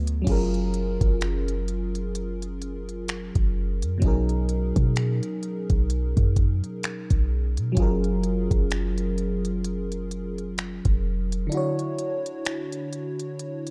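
A lush FM electric piano, layered with a soft pad and treated with chorus, opens this dreamy, romantic contemporary R&B excerpt alongside a deep, boomy 808-style bass with a clean, sine-like tone. A smooth electronic drum kit joins almost at once, its knocking kick, smooth hi-hats, finger snaps and crash cymbal sitting up front at a slow 64 BPM in 4/4 with a gentle sixteenth-note swing. In F# major, the piano moves from F#maj7 to Bmaj13 and back, its fast attack and decaying notes giving the chords a soft, glowing shimmer over the bass. At 11.5 seconds the bass drops out and the kick falls silent as the harmony shifts to Dmaj9, leaving the piano and the rest of the kit to carry the final moments. The dark production keeps everything close and dry, with little reverb.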